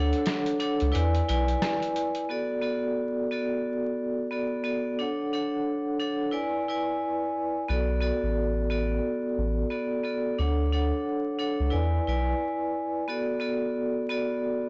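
A bright, ringing vibraphone struck with hard mallets sits up front through the whole 14.7 seconds of this reflective, dark boom-bap hip-hop fragment, its metallic tone carrying a medium motor vibrato and trimmed by high- and low-pass filtering as it moves over Dmaj7, E7 and Bm7 chords in B dorian. The piece moves at 89 BPM in 4/4 with a swung sixteenth feel, opening on a short break where a muffled, pitched-down trip hop sampler-style kit of hi-hat, rim click and a medium-tuned snare plays quietly until 2.3 seconds, sounding compressed, tape-warm and re-recorded in a small room. A soft dub sub bass, deep and round with a blend of triangle and square wave, fast attack and sustained notes, sounds up front with transformer saturation at the start and again from 7.7 to 12.3 seconds. The recording carries light reverb and digital ambience, but it is blown-out and overdriven, dusted with vinyl crackle and dull in the top end. 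Cut from a longer piece, it drifts through the chord cycle with a hazy, brooding calm.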